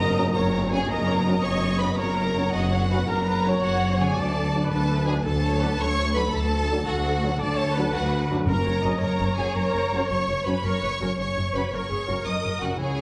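A lush violin section carries the melody high in its range, its soft attack, expressive vibrato and smooth top leading this heroic, adventurous film-score passage at 111 BPM in 12/8. A second violin line sits an octave lower with a more focused tone. Violas fill the middle with sliding portamento, while rich, even cellos and rich double basses anchor the bass in bowed ensemble warmth. A mellow French horn section holds sustained chords in the background, and a very quiet concert harp rings out bright fingerpicked arpeggios beneath the strings. Round, soft-mallet timpani strokes on calf heads mark 0.0, 8.5 and 12.8 seconds as the harmony moves from F# to D at 4.2 seconds and back to F#. A recital-hall reverb with a 1.4-second decay wraps the ensemble in a spacious, wet glow throughout this fragment of a longer cue.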